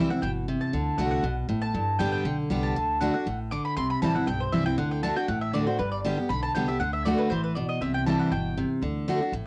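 This home cassette recording has a light reverb around it, catching a short stretch of a longer bluegrass piece in the middle of its run. The mood is driving and virtuosic, with a straight feel in 4/4. Up front, a picked dreadnought steel-string guitar carries the accompaniment in a full-bodied tone, with its sound taking on a cassette tape colour. The mandolin takes the solo with warm stabs from 0.1 s to 8.7 s, its double strings giving a woody bite that also has the tape character. Beneath them, a pizzicato upright bass with gut strings sits low and dark, adding a thumpy foundation under the cycle of C, D and G chords.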